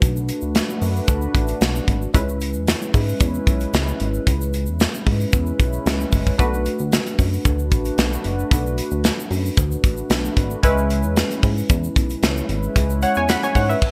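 A slick, funky early-eighties boogie funk groove at 113 BPM brings together an airy, up-front drum kit whose tight kick, medium-tuned snare and bright cymbals ring through gated reverb, alongside a punchy, chorused, detuned sawtooth polysynth comp with a wave-folded pluck, a glossy pulse-wave synth bass with filter pluck, and a grainy egg shaker tucked in the background, all cycling between Bm7 and C#m7 in a polished 1980s-style digital production cut from a longer piece.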